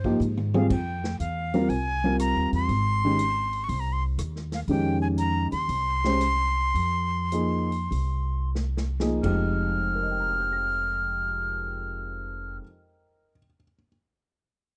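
A short drum fill at 0.2 seconds sets off this cool, searching modal jazz passage in F minor, cut from a longer piece and swinging in 4/4 at 84-121 BPM over an Fm9 chord. Up front, a breathy, bright concert flute carries the melody in a straight, tongued and slightly unsteady tone. Close beside it, a concert grand piano with deep bass and audible action noise supplies intimate, natural accompaniment, and a woody pizzicato upright bass on steel strings anchors the low end. Set further back in a big room, the big-band drum kit brings a punchy kick, a medium-tuned snare, hi-hat, rim clicks, toms and crash cymbal. The tempo slows through the middle, and after a second fill the drums stop at 9.5 seconds, while flute, bass and piano carry on; the flute and bass finish at 12.6 seconds, and the piano rings on alone until 13.9 seconds. The whole take has the dry, close sound of a 1970s-style studio.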